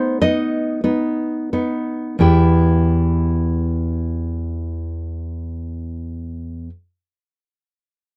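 A full-bodied, up-front fingerpicked nylon-string guitar carries this intimate, passionate romantic solo classical fragment in E minor, moving in a rubato 6/8 at roughly 27-36 BPM over a span from E2 to G5, slowing through its opening B chord before settling on E minor at 2.2 seconds, all captured in a dry, close 1970s-style studio sound touched with light reverb.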